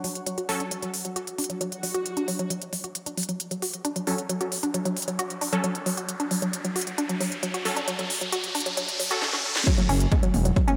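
Bright, 1980s-style digital production with a lush hall reverb frames this hypnotic, relentless slice of driving peak-time techno at 134 BPM in F# minor, where a woody, wave-folded pluck riff with chorus, tube saturation and sidechain pumping runs throughout over an overdriven techno drum kit with a cracking snare and smooth hats, while a resonant drone with moving overtones sits in the background. An electronic swell from 1.8 s leads into a build-up at 2.5 s, where a riser climbs toward a drum fill and a punchy, airy supersaw stab joins at 4.1 s under a filter sweep. The drop at 9.7 s brings in a heavy, layered electronic kick and a thick, menacing detuned saw bass up front.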